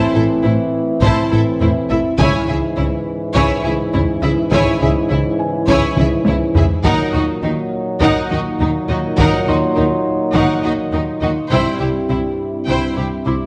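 Drenched in wet scoring-stage reverb, this brooding, relentless cut from a hybrid orchestral and electronic film score moves at 103 BPM over Am, C#m, D#m and C chords: a lush violin section sings the melody in the background above a rich second violin line and focused violas, while clear trombones and dark, distant French horns hold sustained chords, expressive cellos and woody double basses anchor the bass, a soft felt-muted upright piano with delay adds intimate texture, and a band-limited taiko ensemble with heavy sticks pounds in from 1.0 s, marked by a drum fill at 6.0 s.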